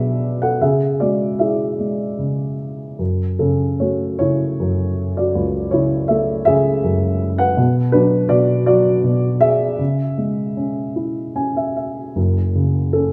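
A dark upright piano sits up front in light reverb, its tone mellow, woody and vintage, with a smooth edge to each note. This short classical piece for solo piano is lyrical and melancholic, moving in 3/4 at a rubato pace of roughly 72-84 BPM in F# minor. The piano spans F#1 to G#5, from deep bass to the upper register, across the whole 13.1 seconds. The harmony moves from Bm through C#m to settle on F#m at 3.0 seconds, then returns through Bm and C#m before landing on F#m again at 12.2 seconds. A short piano fill between 11.0 and 12.2 seconds leads into that final arrival, and the passage is cut from a longer work.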